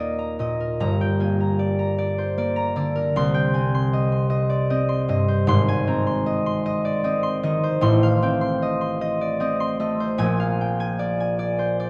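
A rubato 6/8 lilt at about 51 BPM, counted in dotted quarters, carries this graceful, dreamy classical piece for solo concert harp, cut from a longer work. The fingerpicked harp rings acoustic and warm across a span from Eb1 to C6, moving through Eb, Gm, Cm and Ab before F7/A and a closing Bb7 at 10.2 seconds. A wet recital-hall reverb places the listener further back in the room.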